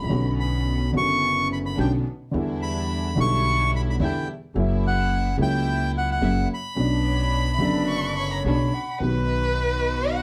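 This passionate, dramatic tango fragment opens on a dark, worn upright piano with audible action noise and a woody pizzicato upright bass, with a fleeting touch of bowed violin. Soft-attack symphonic strings add floating stabs, while a reedy, boxy bandoneon carries the melody up front from 0.4 to 8.4 seconds in a rubato feel. Near the end an airy concert flute joins the returning violin, whose distant, expressive vibrato and portamento, colored by tape echo, take a solo from 9.0 seconds under light reverb.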